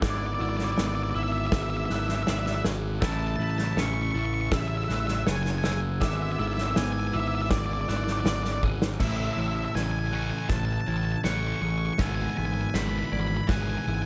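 Post-rock at 80 BPM in A major, soaring and euphoric, where a dark, fuzzy lead guitar with delay carries the melody over a very quiet pedal steel's fingerpicked slide chords, a clean chorused guitar's background arpeggios, soft bell-like glockenspiel arpeggios struck with rubber mallets, an up-front overdriven fuzz bass and a punchy, loose indie drum kit with dark cymbals whose fill at 8.6 seconds opens a build-up, joined at 9.0 seconds by a sludgy overdriven guitar riff, all in a dark, small-room production cut from a longer piece.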